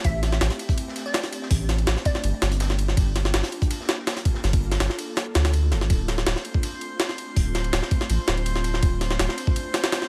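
Nostalgic yet frenetic, this drum and bass and jungle excerpt pairs an up-front, gritty, pitched-up sampler-style kit with a thumpy kick and high-tuned snare against a very quiet, dark and crunchy breakbeat kit, all over a deep, round dub sub bass with tube saturation and an ethereal detuned pad with ensemble chorus and reverb, while a crystalline wavetable pluck with dub echo sits in the background until 2.3 s, the kick briefly drops out at 5.2 s, and a bright, drifting glass-harmonics texture with chorus and reverb enters at 6.2 s.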